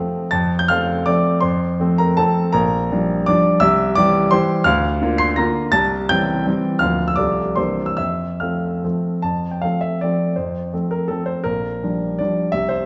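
Classical romantic triple-time dance for solo piano in F major, set in 3/4 with dotted rhythms and a rustic, proud character. The tempo moves freely with rubato, ranging from 133 to 182 BPM across this short excerpt cut from a longer piece. A warm baby grand piano plays alone from start to finish at 12.9 seconds, sitting up front and spanning Bb1 to C7. The harmony opens on F, passes through Gm7/Bb, C and Bb/D, and a brief C9 resolves home to F at 8.0 seconds before a new section begins at 9.2 seconds and returns to Gm7/Bb. The sound is wet with recital hall reverb, and the top end is rolled off so the tone stays warm and rounded.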